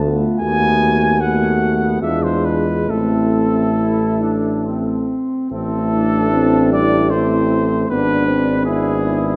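Heard through the wet bloom of a scoring stage, this dark, rounded excerpt of a classical, hymn-like brass band piece in 3/4 unfolds with a rubato, melancholic and yearning feel. From 0.4 seconds a mellow cornet carries the melody with vibrato. Beneath it sit a shadowy French horn section on the second line and a glowing trombone section, both distant and roomy in the background, along with a softly attacked euphonium that is likewise distant and roomy. Meanwhile a smooth-topped tuba anchors the bass up front as the harmony moves from B7/D# through E7b9 to Am at 2.9 seconds.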